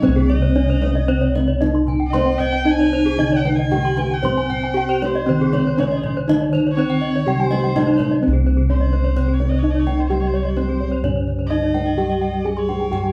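In a straight 4/4 pulse at 114-128 BPM, this brilliant, shimmering Balinese gamelan passage in C pelog sets an airy, wood-mallet bronze metallophone melody over round, up-front bossed gongs carrying the bass, with a mellow, padded metallophone accompaniment and deep, soft-handed kendang sitting back in a moderate room reverb; two paired-tuned metallophones spin arpeggios, one bright and the other dark and smooth, the latter joining at 0.3 s; and a distant, earthy erhu with light vibrato and portamento bows a second line throughout, while the music moves into a new section at 8.2 s.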